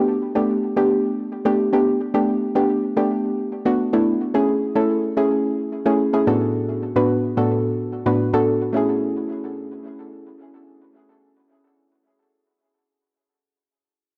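A soft, round synth pluck plays alone throughout this 12.4-second pop fragment, its detuned, dark tone set up front and colored by chorus and tape echo. At 109 BPM in A major, tuned to A4 = 441 Hz, it moves through Gadd9, Amaj7 and D6/A before settling back on Amaj7 at 8.7 seconds, giving a carefree, euphoric lift. The gritty hardware recording carries a light reverb and digital ambience.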